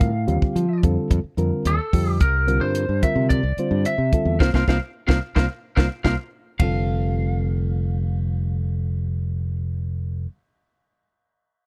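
A dry, close 1970s-style studio sound with small room ambience frames this soaring, slick electric jazz fusion excerpt, where a slightly broken-up, twangy lead guitar carries the melody over a reedy electric piano heard through its built-in speakers. A bright, up-front fingered bass anchors the harmony, while a crisp acoustic kit with a high-tuned snare and tight kick drives the groove, joining the band accent at 4.4 seconds and playing a fill at 6.0 seconds before dropping out at 6.7 seconds. The chords move from suspended sounds to a resolving F at 6.6 seconds.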